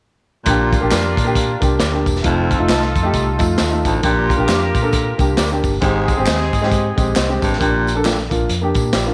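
Joyful and warm, this uptempo 1960s-style soul excerpt with a swung 4/4 lilt sets a raspy, roomy baritone saxophone riff against a tight, clear horn section line, while short-sustain grand piano chords, a dark, round foam-muted electric bass, a gritty breakbeat kit with a saturated snare and kick, tambourine and handclaps in the background, and, from 0.9 s, lo-fi guitar stabs through a small old amp with subtle chorus all ride a light studio reverb until the saxophone drops out at 7.9 s.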